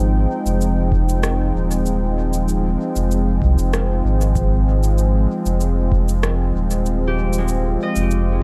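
A smooth, detuned sawtooth pad sits up front in this hazy, spacious ambient dub fragment, holding a sustained Fm9 chord with a soft attack, long release and chorus. Beneath it, a round sine sub bass adds deep, mellow weight at 96 BPM in a straight 4/4, in F minor with A4 tuned to 435 Hz. An overdriven electronic cabasa and rim click, re-recorded in a small room and trailed by dub echo, runs through the groove, while a deep analog kick with its own overdrive stays in the background until 6.0 s. At 7.1 s, a ringing, fingerpicked concert harp enters with arpeggios colored by tape echo. Light reverb and digital ambience frame the dark, warm production of this passage, cut from a longer piece.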